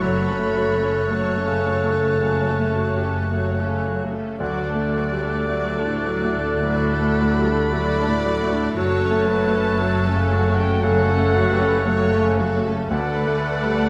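Moving with an unhurried, rubato pulse at 56 BPM in 4/4, this cinematic film-score passage for orchestra feels hopeful and tender, its harmony rocking between F#m and D across the roughly 13.9 seconds heard. A single con sordino violin carries the melody with a veiled, distant vibrato, joined by a muted symphonic violin section lying lower in the background. Around them, an airy concert flute holds a high F#6, a very quiet, clear clarinet sits on A4, a smooth oboe adds light vibrato, and a muted studio violin section fills in the second line. A bright, intimate baby grand piano, its action noise audible, provides accompaniment alongside a rich, muted viola section, while a dark, roomy French horn section sustains chords in the background. Muted cellos and double basses anchor the low end, and a moderate scoring-stage reverb of 1.7 seconds lends the whole ensemble a soft, enveloping glow as this fragment of a longer piece unfolds.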